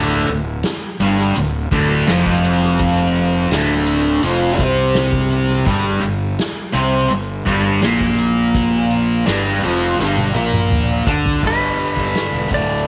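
Psychedelic rock at 83 BPM in a straight 4/4, hazy and hypnotic, this short cut from a longer piece is led by an up-front, double-tracked fuzz guitar riff with distortion and phaser, moving from Dm7 to G5 over a round, punchy overdriven fingered bass. A soft-mallet drum kit with a boomy kick, medium-tuned snare and dark cymbals sits in light small-room reverb and plays a fill from 10.0 to 11.4 seconds. At 11.5 seconds a clean, twangy lap steel enters with slide melody and tape echo as the harmony settles on G.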